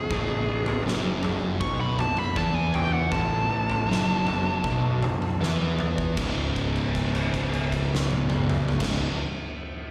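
A compressed fuzz lead guitar opens this slow, hypnotic stoner and doom metal piece at 78 BPM in C# minor, soloing over an A5 chord until 5.4 s, while two thick, picked fuzz guitars grind out the riff beneath, one in the background and the other very quiet. A bright, growly overdriven bass sits up front beside an oversized low-tuned acoustic kit of punchy kick, fat snare, toms and dark cymbals, its pumping big-room sound gritty and saturated, and a drum fill leads into a C#5 chord at 6.2 s, where a note is held. The sludgy performance is heard as a live gig through the venue's PA, with recital hall reverb.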